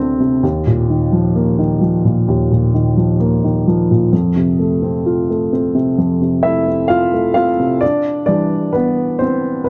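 A dark upright piano carries this short pop excerpt entirely alone, its woody, mellow tone sitting up front with the audible action noise of the instrument adding an intimate, vintage character. The mood is heartfelt and emotional, moving at a slow 65 BPM in a straight 4/4 feel. The piano ranges from D2 up to F5, with the harmony moving from Ebsus2 at 0.4 seconds to F and then to Em7 as a new section begins at 7.8 seconds. Light reverb gives the smooth piano tone a little space, while the production stays dark and warm. Cut from a longer piece, the recording lasts just under ten seconds.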